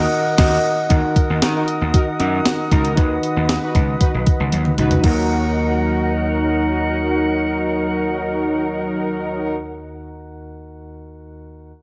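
An urgent, dramatic 1980s-style pop passage in Eb minor at 116 BPM opens on a full-band accent, where a very quiet, bright overdriven electric guitar sounds only until 0.6 seconds; gritty, punchy slap bass, fat, detuned analog synth brass stabs with chorus and breathy flute-group chords carry the music, while a thumpy, up-front 12-bit drum machine drives through a fill before dropping out at 5.2 seconds, and round, chorused electric-piano-like synth keys with tremolo linger alone until 11.7 seconds in a moderate scoring-stage reverb.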